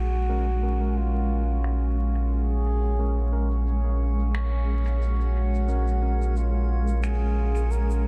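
A veiled, bucket-muted trumpet sings a dark solo melody with light vibrato over a held Bbm7 in this hazy, deep ambient dub fragment at 89 BPM in Bb minor, where a round sub bass sits up front, a blurred granular pad drifts in the background under a filter sweep, gritty overdriven electric piano stabs echo through dub delay from 0.3 seconds, a glassy texture of drifting overtones enters at 1.0 seconds, and brushed shaker and finger snaps add soft, filtered percussion beneath light reverb and vinyl crackle.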